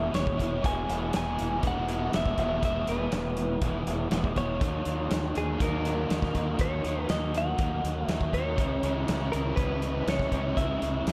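A straight 4/4 pulse at 121 BPM comes from a loose, up-front indie drum kit with a tight kick, a medium-tuned snare and hi-hat in a pumping small room, alongside a round, punchy fingered bass driven into fuzz. This dreamy, hazy shoegaze and dream pop excerpt in E lydian moves from E to D#m7 at 4.6 seconds and C#m7 at 8.6 seconds. Above it, a bright, twangy clean guitar carries the melody through analog delay, while two overdriven guitars play riffs: one warm and compressed with ensemble chorus, the other dark and set in the background with reverse reverb, all under light reverb.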